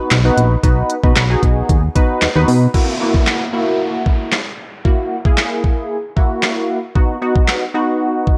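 Dance-pop snippet with a summery, carefree mood, where a punchy, detuned sawtooth polysynth comp with chorus and sidechain pumping rides over a smooth R&B drum kit of knocking kick, deep snare, handclaps, hi-hat and crash, while a round FM bass drops out at 2.7 s and an electronic downlifter sweeps through to 7.0 s as the harmony moves from B to F#7 and back, all under light reverb and the worn, warbling pitch drift of old cassette tape.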